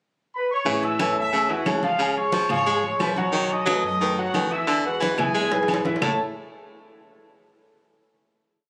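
A mellow trumpet section opens this joyful, danceable salsa piece at 0.3 s with punchy hook phrases, partly doubled in octaves, before a thumpy gut-string upright bass tumbao that anticipates the chords, a bright baritone saxophone ostinato and a brilliant, slightly worn grand piano montuno in octaves fill out the mambo horn riffs. Ringing congas with slaps and open strokes, an agogo bell and timbale shell pattern, and woody claves playing a two-bar time line in the background drive the groove up to a drum fill at 5.2 s and a final chord at 6.0 s. The sound comes from a phone in the room, with light club reverb and compression.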